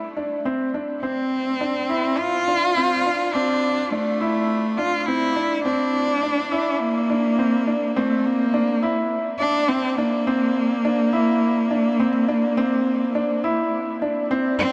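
A straight 4/4 pulse underpins this melancholic, cinematic piano-and-strings electronica, taken from a longer piece and building steadily throughout. A clear baby grand piano sits up front with a compact riff in the middle register, and at 1.0 s a single bowed cello joins with an expressive, nasal melody marked by vibrato, portamento and a soft attack. A huge, wet ambient reverb with a long 6.8-second tail surrounds the music.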